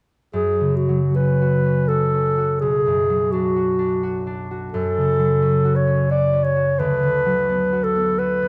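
A mellow, soft-attacked clarinet carries a yearning, melancholic melody up front over fingerpicked, ringing concert harp in this short romantic classical excerpt in F# minor, moving with rubato in 3/4 at 71-89 BPM through F#m, Bm and Bm/D, both playing from 0.3 to 8.5 seconds in a moderate recital hall reverb.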